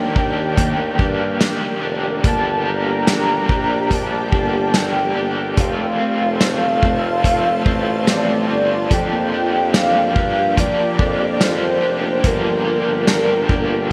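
A loose indie drum kit sits up front in this melancholic, hazy dream pop fragment, its muffled, lo-fi sound with a punchy kick, medium-tuned snare, hi-hat and tambourine wrapped in gated reverb from 0.2 to 13.7 seconds. Over it, a velvety, smooth synth lead carries the melody in G minor at a slow 72 BPM, its detuned sawtooth-and-triangle tone colored by vibrato, chorus and delay. A crunchy, overdriven guitar picks out accompaniment with tremolo and lush chorus, while a dark, clean electric guitar plays fingered arpeggios in the background through analog chorus and delay. An ethereal, airy pad with a slow attack and long release holds sustained chords through ensemble chorus and its own reverb. Beneath it all, a clear tuba plays the bass line with a present, pop-style vibrato as the chords move from Ebmaj7 through Gm, F and Bb6/F to Gm7, all set in a lush hall reverb with a bright 1980s-style digital production.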